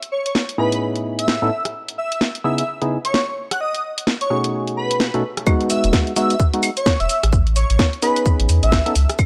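An airy, detuned lead with chorus and analog delay floats over this bouncy, soulful two-step garage cut at 129 BPM in E major, its swung 16ths carried by a garage kit of cracking snare, bright hats, rim click, cabasa and claves. A hollow, organ-like stab, dark and percussive with its own chorus and delay, carries a filter sweep as it moves through jazzy chords such as Amaj9#11, C#m9 and B13. At the drop at 5.5 seconds a tight, up-front electronic kick arrives, with a deep, round dub sub bass following at 5.8 seconds, all in a dry, gritty recording with light reverb.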